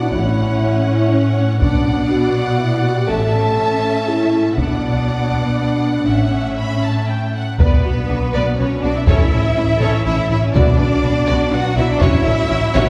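This dark, epic stretch of orchestral film score, cut from a longer piece and moving in three, opens with strings and horns sounding together. A lush violin section carries the melody with focused vibrato, a second violin line sits beneath it with a smooth top, and a viola section adds expressive accompaniment from the background. Mellow French horns hold sustained chords, while a close, up-front cello section and a bowed double bass section anchor the low end. Taiko drums struck with heavy sticks join at 1.6 seconds, ringing in a live room, and a very quiet, dry timpani note sounds at 10.5 seconds. The orchestra is heard from further back in a concert hall, wrapped in a long, wet reverb that adds grandeur.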